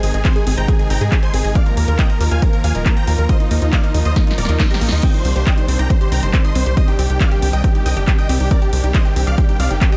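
Set in a digital ambience, this soaring, bittersweet uplifting trance excerpt rides a huge, euphoric supersaw lead colored by cassette tape, sidechain pumping and dub echo, shadowed by a very quiet supersaw stab, over a lush, nasal unison pad, a round analog pluck playing arpeggios with chorus and delay in the background, a tight, driving sequencer bass and an overdriven, up-front electronic kick, while a dry analog drum machine supplies crash, handclaps, hi-hat and snare, with a drum fill from 4.2 s and a faint reverse cymbal at 4.4 s leading into the Cmadd9 chord at 5.0 s.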